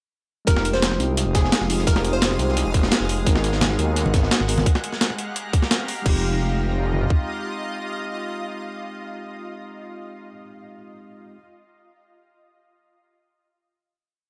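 Liquid drum and bass with a melancholic, dreamy mood opens its drop at 0.5 seconds: a tight, up-front electronic kit of kick and toms, a gritty, overdriven sampler-style breakbeat kit of snare, hats and crash, and a dark, saturated looped break in the background drive a menacing, detuned saw bass with a filter swell and dotted rhythm. A glassy wavetable pluck plays short crystalline phrases through chorus and tape echo, a mellow tine electric piano holds rootless chords with syncopated pushes through dub echo, and a shimmering, ethereal pad sustains chords with chorus and sidechain pumping, while compressed congas with hard hands sit in the background from 3.6 seconds. The drums have stopped by 7.2 seconds, leaving the pad and electric piano to carry the final Fm7 chord.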